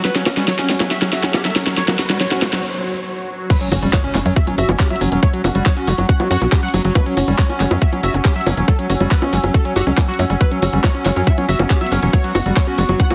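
The heavily compressed, radio-like mix sits in light digital ambience, framing an intense, hypnotic stretch of psychedelic trance cut from a longer piece. It opens on a build-up, with an overdriven garage drum kit of cracking snare, handclaps, hi-hat, bongos and crash cymbal playing a fill beneath an electronic riser, then a brief break before the drop at 3.5 seconds, marked by an impact. There the tight, overdriven electronic kick arrives up front, joined at 3.7 seconds by a punchy, driving sequencer bass of sawtooth and square wave with ring modulation, a plucked filter and tube saturation. A thick, bold unison lead, detuned and wave-folded with vibrato, carries the melody through phaser, cassette tape, tape echo and sidechain pumping. A squelchy, gritty acid bass riff, distorted and resonant with filter sweeps, sits in the background with its own echo and pumping. Around them, a very quiet evolving wavetable pad holds morphing sustained chords, while a dark, warbling tape-like pad adds nostalgic lo-fi texture with chorus, reverb and sidechain pumping.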